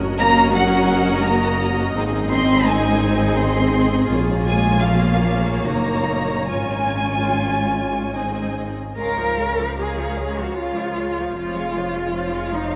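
Serene and tender, this slow romantic movement for string orchestra unfolds in a flexible triple metre with gentle rubato, and it is cut from a longer piece. Violas, a supporting violin line and a dark, lush double bass section begin together, and at 0.2 seconds the cellos and a leading violin section join, the melody sung high with expressive vibrato and a close presence. The supporting violins sound focused and smooth-topped, the violas rich but set back, and the cellos warm and distant, while the basses sit up front with an even, bowed tone. The harmony drifts through minor seventh and major chords before turning to a new passage at 9.0 seconds that rests on Db. A heavy cathedral reverb with a long decay places the ensemble in a vast, echoing space, its highs softened into a hushed glow.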